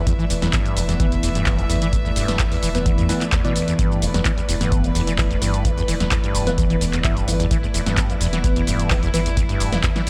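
Acid house at 129 BPM in E minor, driving and raw, this excerpt is built on a squelchy, resonant sawtooth acid bass riff with overdrive and delay, supported underneath by a thick, tube-saturated sub bass, while a deep, tape-warm kick and a punchy analog drum machine with handclaps, hi-hat, shaker and snare re-recorded in a large room keep a straight 4/4 pulse. A rich, earthy chamber string section holds sustained chords with light vibrato, and an airy, breathy pad with chorus adds texture, both carrying sidechain pumping along with the sub bass. Bell-like tine electric piano stabs, bright and clean through phaser and delay, enter at 0.4 seconds, all set in a light reverb.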